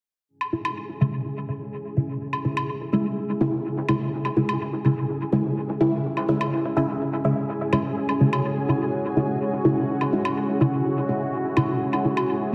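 A dreamy mix soaked in lush hall reverb opens this nocturnal, meditative dub techno cut in C# minor at 125 BPM, where up-front, muted sawtooth chord stabs with a fast filter pluck and phaser carry dub echo while a filter sweep runs across them from 0.3 seconds. Alongside them, a dark, moody analog pad holds sustained chords with a sub octave, slow attack, chorus and phaser, as a grainy, flickering granular texture hovers in the background on a single high note. A layered electronic woodblock, re-recorded in a small room, taps through with dub echo on a single C# minor chord that holds throughout this section of a longer piece.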